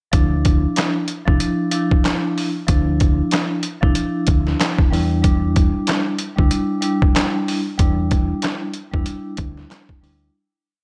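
A lightly reverberant boom-bap hip-hop piece with a dark, reflective mood, built on an up-front, gritty, compressed, pitched-down sampler-style kit with a thumpy kick and clap-layered backbeat snare, a round, punchy dub bass looping deep in the background, and mellow, ringing soft-mallet vibraphone chords chopped and repeated like a sampled loop through a cassette-tape haze, moving from Dmadd9 to Em7 at 4.9 seconds before fading out from 7.8 seconds.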